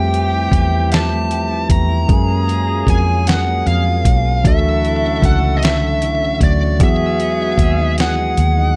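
A slow 6/8 R&B groove at 51 BPM, tender and intimate, set by a dusty, gritty sampler-style drum kit with a thumpy kick and fat snare, up front beside a round, punchy, foam-muted fingered bass, while a bright overdriven lead guitar with slapback echo carries the melody, a hollow-body guitar with spring reverb plays a second line, a mellow tine electric piano and a glassy, ethereal glass harmonica sit in the background, and a distant horn section adds clear stabs over Fmaj9, F#maj9, Dmaj9 and Emaj9 in a dark, dry production cut from a longer piece.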